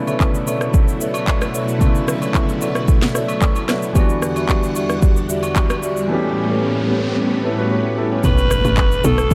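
A clear concert grand piano and a shimmering, vintage string machine open this soulful, late-night amapiano excerpt in B minor at 112 BPM, the strings pumping under ensemble chorus while a woody, soft-mallet marimba adds stabs through tape echo, over an up-front electronic drum kit with deep kick, sharp snare, handclaps, rim click and shaker, plus distant agogo bells in the background. The chords move from Bm11 to Em9 and A9 as a background riser builds from 5.3 seconds, leading to a drop and impact at 8.2 seconds. There a tight, punchy log drum bass and a breathy, raspy alto saxophone with vibrato enter on Bm7, all within a dark production with light reverb and small room ambience.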